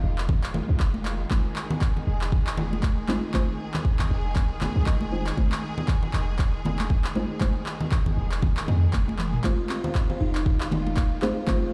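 Played back through a big sound system in a bare stone room, this earthy, spiritual afro house excerpt carries light reverb and a small-room ambience around a groove at 118 BPM in 4/4, swung at 58% on the 16ths and sitting on an F minor seventh chord in F minor pentatonic. A deep electronic kick sits up front, joined by a produced afro-pop kit of handclaps and toms and by close, dry congas struck with hard hands for a ringing acoustic tone. Underneath, a boomy 808-style bass with a sine body, a noise layer and a fast, decaying attack breathes with sidechain pumping. A nasal, detuned chord stab built from triangle, sawtooth and sine tones plays dark, filter-plucked hits through chorus and dub echo while a filter sweep runs across it, and a clear, lush symphonic string section holds bowed chords with vibrato, roughened by vintage 12-bit sampler grit and sidechain pumping. After a drum fill at 8.9 seconds, a buzzing kalimba enters at 9.4 seconds with short, woody, hollow-box arpeggios plucked by a fingertip and trailed by dub echo.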